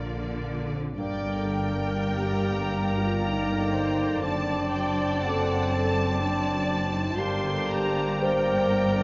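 A dark French horn section holds sustained chords at the front of this slow, romantic symphonic movement in G minor, a warm and serene passage cut from a longer piece. The tempo drifts between 48 and 63 BPM in 3/4 with a rubato feel, and the harmony moves from Bb to G minor, through D7/F#, and back to G minor. Lush, expressive violins sing the melody with vibrato and soft attacks, while a second violin line sits in the background, and distant violas add accompaniment with vibrato and portamento. Focused cellos and smooth, even double basses carry the bass, and a very quiet concert harp plays ringing fingerpicked arpeggios beneath. At 1.0 s the woodwinds enter: a pure, crisp-attacked flute and a warm solo oboe add second lines, and a roomy bassoon offers background accompaniment. The whole orchestra sits in a wet scoring-stage reverb with a 1.9-second decay, and its mellow top end gives the sound a soft, rounded glow.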